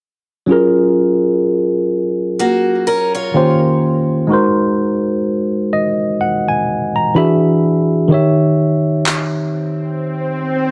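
A worn, slightly out-of-tune tine electric piano, played through a combo amp with phaser, carries this smooth, tender contemporary R&B excerpt in a swung 4/4, moving through F#maj9, D#13, G#7, E9 and D#7b9 and adding a fill from 5.3 s. A boxy, woody old ladder-braced acoustic guitar on old strings adds brief picked arpeggios through analog delay from 2.4 s, while electronic handclaps, re-recorded in a small room, pop up near the close and an electronic swell arrives at 9.9 s. Light reverb and digital ambience give the mix an echo-heavy sheen.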